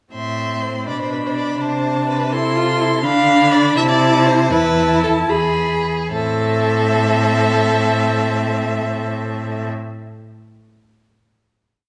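From the first moment at 0.1 seconds the full string quartet sounds together in this dramatic, stormy classical-period movement in A minor: a quick 6/8 with rubato, at 71-85 BPM in dotted quarters. A focused first violin with vibrato carries the melody high above an even, distant second violin line. The viola adds a counter-melody and sustained chords, while an expressive, up-front cello with a soft attack and portamento holds the bass with passing notes. The ensemble slows from 2.3 to 6.1 seconds and settles onto a final A minor chord that rings through the wet reverb of a recital hall.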